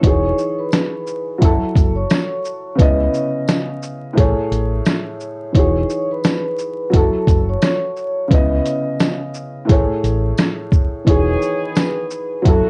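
A reflective, dark boom-bap hip-hop excerpt opens with a ringing soft-mallet vibraphone melody with tape echo and slow motor vibrato over a woody, intimate upright piano with audible action noise, a round dub bass in the background and a muffled, compressed, pitched-down sampler drum kit with a thumpy kick up front, while a faint jingly tambourine enters at 0.7 seconds and a distant, tight horn section adds stabs from 11.1 seconds, all wrapped in a cassette home-recording sound, vinyl crackle and light reverb.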